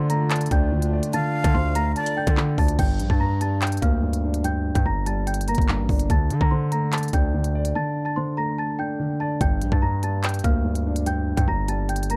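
Drill hip hop in a half-time feel, ominous and menacing, cut from a longer piece: a bell-like, delicate celesta carries the melody through a low-pass filter over a mellow, boxy concert grand piano with audible action noise, while a hollow, warbling pad with chorus sits in the background until 2.8 seconds. A breathy jazz flute with vibrato and analog delay adds a brief second line from 1.1 to 2.4 seconds, as a distorted, saturated 808-style bass and an up-front drill kit of knocking kick, crisp hi-hats, handclaps and crash cymbal drive the track, with a short break partway through. A small room lends the production a dark, warm character.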